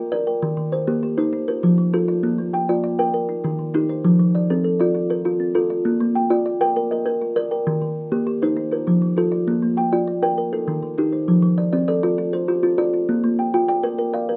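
Recorded in a small room with a moderate ambience, this rough home demo has an unpolished sound. It is an excerpt of southern African traditional music, hypnotic and warm, moving at 133 BPM in a straight 12/8 in F mixolydian. Two kalimbas play arpeggios together from start to finish, spanning Eb3 to G5. The louder one sits up front, thumb-plucked, with a woody, hollow-box tone that is short, dark and smooth. The quieter one is fingertip-plucked, mellow, soft and ringing. The harmony cycles through Eb, F and Bb, and a closing section from 11.3 seconds moves from F to Bb.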